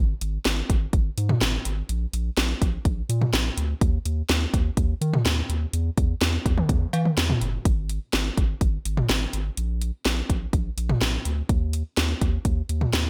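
Melancholic yet driving, this short synth-pop excerpt sets a deep, dark analog bass with a fast attack and sustained notes against an electronic house drum kit. The layered kit, treated with gated reverb, sits up front with a punchy kick, a cracking snare, metallic hi-hats, cowbell and toms, while the bass holds a low, round foundation. The bright 1980s-style digital production adds light reverb, and the music moves into a new section at 7.7 seconds.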